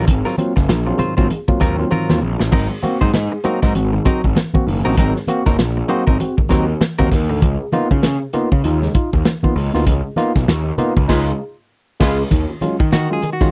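A dry, close 1970s-style studio sound frames this hypnotic, sly funk excerpt at 98 BPM with a 16th-note swing, where a crunchy, saturated breakbeat kit with dark cymbals and a growly, fuzz-drenched picked bass sit up front, a barky tine electric piano through a combo amp adds overdriven stabs with slapback echo, damped, soft-handed congas stay in the background, a clean hollow-body guitar accompanies until 7.3 seconds and returns at 12.9 seconds for a brief solo, and a clear, loose horn section with light vibrato slips in a second line at 11.1 seconds.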